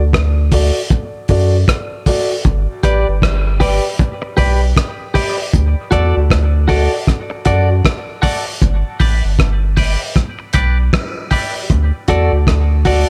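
A deep, round sub bass opens this hazy, spacious dub reggae excerpt, joined almost at once by a muffled, cloth-damped drum kit of tight kick, hi-hat and rim click and by dark, boxy grand piano stabs treated with dub echo, before a twangy, clean electric guitar enters at 2.8 seconds with spring reverb and echo after the opening break, while a filter sweep runs from 5.5 to 11.7 seconds over a swung groove alternating between D and G chords.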